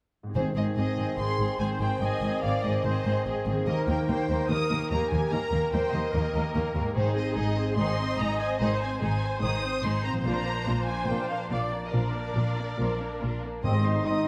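Heroic adventure film score, triumphant at 145 BPM in Ab lydian: a ringing harp arpeggiates from 0.2 seconds beneath a lush, vibrato-rich violin melody, a second violin line, a focused viola accompaniment, mellow distant French horn chords, warm cellos with portamento and woody double basses, while very quiet, round timpani with soft mallets mark the opening and the final Ab chord at 13.6 seconds, where a pure silver flute and a roomy clarinet join, all in a moderate concert hall reverb in this cut from a longer piece.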